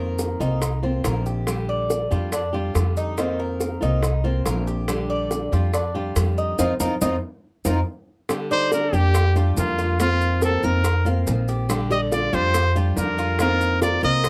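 Latin music in the Cuban son and guajira vein, this danceable, relaxed passage from a longer piece moves at 141 BPM in a straight 4/4 in Bb major, swaying between F7sus4 and Bb6. A woody, dark upright bass sits up front with pizzicato steel strings, while a boxy, fingerpicked flamenco guitar, with audible finger squeak, comps in the background and a metallic Cuban tres with doubled strings spins out arpeggios above it. Tight, high-tuned bongos played with soft hands and grainy, mellow maracas join almost immediately, and a band accent from 6.6 seconds, capped by a drum fill, ushers in the second section at 8.3 seconds. There a punchy trumpet takes the melody up front, its light vibrato, scooped notes and smooth top framed by plate reverb, while a second flamenco guitar with fresh strings adds its own fingerpicked line. A light reverb gives the whole band a sense of shared space.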